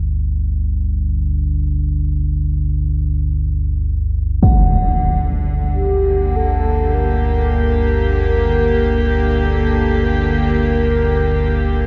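A slow, straight 4/4 pulse at 48 BPM underpins this unsettling, desolate dark ambient drone in G harmonic minor, cut from a longer piece. It opens on a deep, ominous rumbling drone with built-in reverb and lush chorus, and the harmony moves from G5 to G minor at 4.4 s. There a huge, bright impact with a low-pass filter lands, while a bronze singing bowl rings, metallic and meditative, in the background, and at 4.5 s a close cello section enters with pure, floating sul tasto chords. From 5.7 s a mellow, horn-like synth lead with vibrato, subtle chorus and diffuse ambient delay carries a round melody, and the mix sits in a long ambient reverb with the dulled top end of cassette tape.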